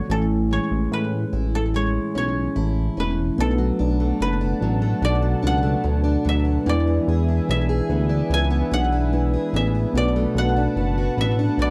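A glossy, up-front chorused synth bass anchors this lonely, wistful excerpt of indie bedroom pop at 73 BPM in B dorian, underpinning a bright, woody koto melody dressed in analog chorus and slapback echo. A picked plugged-in steel-string acoustic guitar with lush chorus and warbly pitch drift, complete with finger squeaks, plays alongside a mellow tine electric piano sitting in the background, moving through Amaj7, Bm7 and E7. From 3.8 seconds a detuned, vintage analog pad adds smooth sustained chords, all captured in a dry, close 1970s-style studio with small room ambience.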